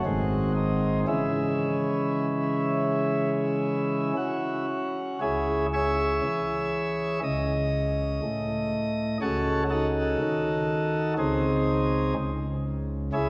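Worn, warbling cassette tape lends this recording a drifting, unsteady pitch, and a wet church reverb with a 2.9-second decay hangs around every chord. It is a grave, dark chorale-style classical piece in C# minor at 60 BPM in 4/4, with beats that fall unevenly, and it is cut from a longer piece. A solo pipe organ on a principal chorus carries the whole 13.3 seconds, sitting up front with a full, baroque voicing and an audible chiff at the start of its notes. Its range reaches from a deep G#1 up to E5. After an opening G#7 resolves to C# minor, a second passage begins at 5.2 seconds and moves through A over C#, a half-diminished D# seventh over C# and G# over C#, so the harmony hovers above a C# bass.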